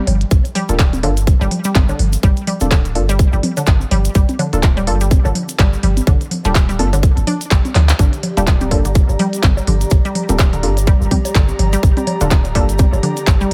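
An echo-heavy digital ambience surrounds this hypnotic, cool minimal techno cut in G minor at 125 BPM with a swung 4/4 groove, where a tight, up-front kick and a deep, punchy sub bass with a pitch-drop attack and sidechain pumping anchor handclaps and clicky hi-hats, background electronic bongos, congas and toms with tape echo, grainy cabasa, a squelchy, resonant blip pluck riff with chorus and analog delay, muted dub chord stabs on Gm7, a drum fill at 7.8 seconds, and an airy, breathy pad entering at 8.0 seconds.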